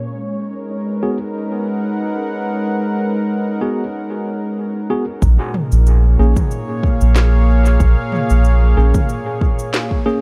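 Meditative and deep, this ambient dub excerpt at 93 BPM with a light 16th-note swing opens on a smooth, detuned sawtooth pad under a filter sweep and a bubbling, resonant texture of random filter steps in the background, all over a G#m7 chord. At one second, worn, slightly out-of-tune tine electric piano stabs join, trailing dub echo. At 5.2 seconds the harmony moves to A#m7 as a round, dark analog bass, a tape-warm layered electronic kick up front, and an electronic kit with a woody snare, cabasa and toms arrive, the kit touched by studio reverb and dub echo. The pad carries chorus throughout, and a digital ambience surrounds the whole mix.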